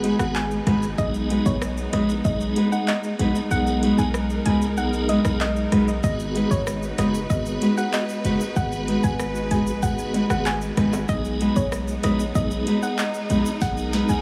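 Fingerpicked nylon-string guitar arpeggios with tape echo drive this bouncy, hypnotic dancehall fragment, over a hard-hitting, punchy 808-style bass and an electronic afro-pop kit with a deep kick, sharp snare and metallic hats. A piping tonewheel organ with fast rotary speaker, lush bowed strings with sidechain pumping, and a soft, round, detuned pluck melody with chorus fill out the G#m7 and B6 harmony. The kick drops out from 3.5 to 6.0 seconds, after which ringing tube shaker and timbales join in the background, and a drum fill starting at 13.6 seconds closes the excerpt, all inside a dreamy mix soaked in huge ambient reverb.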